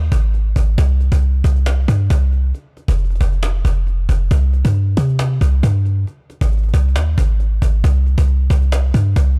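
A clean, 808-style bass opens this menacing trap excerpt, its deep, boomy sine tone sitting up front with a fast attack and a mellow decay, ranging from F1 to C3 in C minor. A cajon joins almost at once, snappy and compressed with a saturated edge, its snares rattling under hard hands and sitting well beneath the bass in level. At 136 BPM with a half-time feel, the dark production wraps both parts in studio reverb for a brooding hip hop mood across about 9 seconds.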